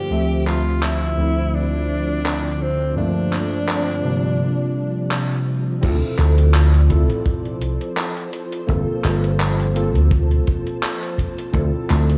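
A hazy cassette-tape sheen and small-room ambience wrap this short, woozy and nostalgic vaporwave excerpt in a faint glow of reverb. A bright tenor saxophone opens the melody with forceful, jazz-style phrasing, vibrato and scooped notes, its smooth top roughened by vintage 12-bit sampler grit and trailed by tape echo before it drops out at 5.4 seconds. Beneath it, warbly lo-fi synth keys sit up front, detuned and mellow with an analog chorus, while a silky string machine holds slow-attack chords through an ensemble chorus. A gated 80s digital drum machine adds overdriven handclaps, hi-hat and crash cymbal, its gated reverb giving the kit a boxy, retro snap. At 5.8 seconds a dry, foam-muted slap bass arrives punchy and forward with tube saturation, joined by a studio-room acoustic kick drum played with bundle sticks, as the loose, lightly swung groove circles around minor-seventh and suspended harmonies.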